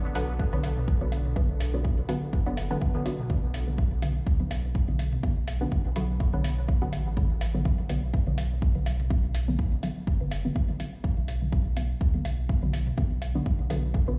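A big sound system booming in a bare room gives this hazy, nocturnal dub techno cut its space, moving at 124 BPM in B minor with a swung 16th-note feel. A very quiet, dark sawtooth pad holds sustained chords until 3.3 s, while a round sine sub bass with sidechain pumping and an overdriven, up-front kick drive the groove. Muted, detuned chord stabs with chorus, phaser and dub echo take on a filter sweep from 3.3 s, over a muffled, pitched-down hi-hat and dry analog woodblock and toms in the background.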